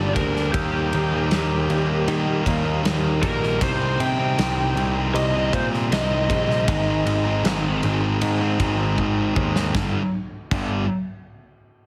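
A bright, up-front fuzz guitar riff drives this dark, angsty slice of quiet-loud alternative rock, joined by a growly overdriven picked bass and a big-room acoustic drum kit with a punchy kick, while an overdriven lead guitar solos until 7.8 seconds over a lo-fi guitar arpeggio with analog delay that sits in the background and stops at 3.6 seconds, with a drum fill at 9.0 seconds leading into a new section, the mix carrying light reverb and a heavily compressed, radio-like sound.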